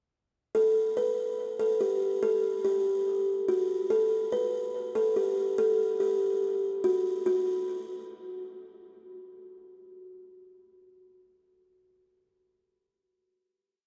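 This hip hop and trap piece runs at 143 BPM in 4/4 with a half-time feel, and its mood is hard-hitting and menacing, tuned slightly sharp to A4 = 441 Hz. A buzzing kalimba plays solo from 0.5 to 8.5 seconds, thumb-plucked between F#4 and B4 with a woody, hollow-box tone that sits up front. Its looping melody repeats like a sampled loop, and an analog delay trails each plucked note. The breakdown carries the kalimba from 0.5 seconds, then a final note rings from 7.3 to 10.6 seconds. A cathedral reverb with a long 5.8-second tail soaks the whole mix in a dreamy haze.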